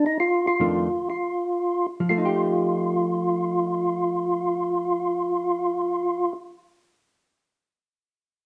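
In free time that slows over the first 2.1 seconds, this short jazz excerpt in F mixolydian has a swinging, greasy mood, moving from an F13 chord to F9 at 2.1 seconds. A fat, percussive tonewheel organ carries the melody up front between Eb4 and F4, its clean tone marked by key click, third harmonic percussion, chorus vibrato and a slow rotary speaker. A dark, compressed hollow-body jazz guitar enters at 0.6 seconds with fingered accompaniment from F2 to G4, and the pair sounds like a band playing live in one room with moderate studio reverb.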